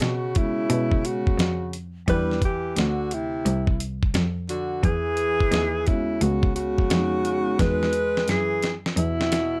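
A gritty, compressed sampler-style drum kit sits up front in this cool, smooth jazz-hop excerpt, its thumpy kick, fat snare and hi-hat carrying a swung 16th-note feel in 4/4 before a fill from 7.6 seconds. A close-miked alto saxophone sings the melody with breathy subtone and vibrato over a mellow tenor saxophone second line with scooped notes, while a bowed cello supplies a rich, focused bass with vibrato. Soft-mallet vibraphone rings with slow motor vibrato from 0.3 to 7.9 seconds over E69, Cadd9 and Emaj9 harmonies, set in a dark production with light reverb.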